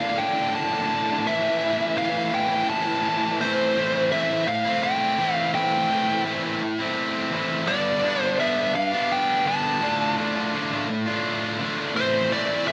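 A moderately large studio reverb with a digital sheen surrounds this brooding, cathartic rock fragment in 3/4, where an up-front, bright, double-tracked distorted electric guitar picks an overdriven riff while a nasal lead guitar with a parked wah, fed through overdrive and tape echo, carries the melody, both playing throughout as a short build-up over the first 3.4 seconds gives way to a passage moving from Am7 through G and Dm/A back to Am.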